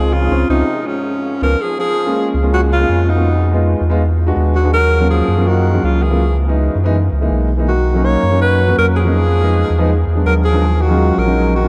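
From the first moment, this danceable, sophisticated jazz at 163 BPM sets a breathy, subtone alto saxophone melody up front over a round, sine-like sub bass, intimate concert grand piano with audible action noise moving from Dbmaj7 through Fm7b5 and E9 to D#m11, and a bright, punchy trombone second line sitting distant in the background, with a band accent from 0.3 to 1.8 seconds, all heard in a vast, echoing cathedral space.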